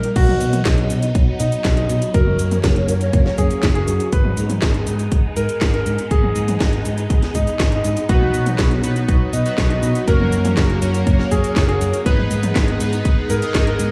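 Italo disco with a nostalgic, bittersweet mood, where a clear concert grand piano melody carrying sampler grit and digital delay rides over swirling, phased string machine chords, a round fingered electric bass, a punchy electronic kick and a house drum kit with a cracking snare, metallic hats and gated reverb, before a glossy, chorused polysynth adds stabs from 8.1 s, all against vinyl crackle.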